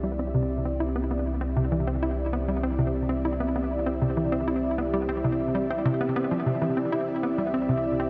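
A wet concert-hall reverb with a 2.0-second decay surrounds this short excerpt of ambient, sequencer-driven space music, giving it an expansive, cosmic air. At 98 BPM in a straight 4/4 and C major, the whole passage rests on a single Cadd9 chord for its 8.1 seconds. Up front, a sweeping, resonant pad holds sustained chords from C4 to E5, its detuned sawtooth and sine layers with a sub octave giving a full-bodied, bright, evolving tone that blooms through a slow attack and long release, dressed in chorus and shimmer reverb. Also up front, a hollow square-wave pluck plays a bouncy riff between C3 and E4, its detuned tone edged with a noise layer and snapping with a fast attack and short decay, treated with chorus, delay and shimmer reverb. Beneath them, a round analog bass sustains a deep, dark C2, blending square, sine and triangle waves shaped by wave-folding.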